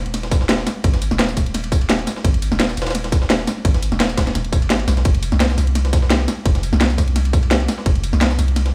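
A deep, mellow 808-style bass opens this lush, dreamy liquid drum and bass excerpt at 171 BPM with a lightly swung 16th feel, joined at once by an up-front electronic kit with a cracking snare, bright hats and tambourine, a gritty, pitched-up jungle sampler-style kit with a high-tuned snare and ride cymbal, and then a tight, overdriven electronic kick at 0.3 seconds, all set in a small, dry room.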